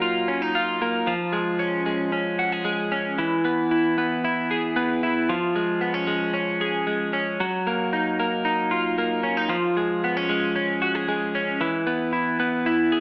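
Indie pop with a breezy, youthful mood, this short excerpt cut from a longer piece moves at 114 BPM in a straight 4/4, centred on Db mixolydian with tuning set slightly sharp at A4 = 441 Hz. A lone twelve-string electric guitar plays solo throughout the 13 seconds, picked cleanly in a range from E3 to Ab4. Its tone is bright and twangy, compressed and placed up front, with a spring reverb on the doubled strings. The harmony opens on Ebmadd9 before settling into a cycle that moves between Db and E, returning to Ebmadd9 at 7.4 seconds. A moderately large studio reverb surrounds the guitar, while an AM radio sound colours the whole recording.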